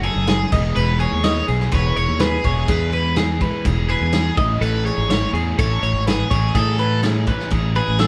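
A straight 4/4 groove from a loose indie drum kit, with a punchy kick, medium-tuned snare, crash cymbal and a rolled-off top, drives this playful, wistful math rock and midwest emo fragment cut from a longer piece. A growling fingered bass, overdriven and up front, sits under a double-tracked, overdriven semi-hollow guitar riff, while a clean, compressed twelve-string electric guitar spins arpeggios and a bright, overdriven electric guitar carries the melody. The chords move from a rootless Eadd9 through Emaj7 to Amaj9 at 4.4 seconds, and the band sounds as if it is playing live together in one room with moderate studio reverb.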